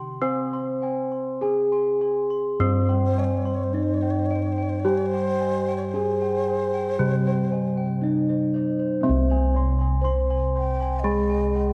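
Dark, hall-reverberant production with a faint mains hum frames this stately, shimmering Javanese gamelan excerpt in C pelog at a slow 49-60 BPM in a straight 4/4, where a mellow bronze metallophone carries the melody over a lower metallophone accompaniment and round, beating bossed gongs up front in the bass, while a bright higher metallophone and airy background gongs ring out arpeggios, and a breathy, close-miked xiao with unsteady vibrato joins at 3.1 s with a soft second line.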